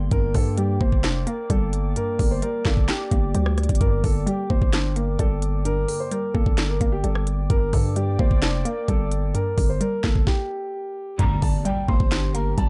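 A half-time trap beat at 130 BPM in G minor sets an eerie, brooding mood, with an up-front kit of knocking kick, sharp snare, crisp hats, rim clicks and handclaps over a growling, buzzy 808-style bass, while a boxy grand piano carries the delayed melody above a glassy, detuned wavetable pluck and a warbling, lo-fi tape-like pad, all in a dry, dark mix; after a stop at 10.3 seconds, a very quiet electronic impact and brief lush string stabs arrive at 11.2 seconds, joined at 11.4 seconds by a hollow, airy pan flute line.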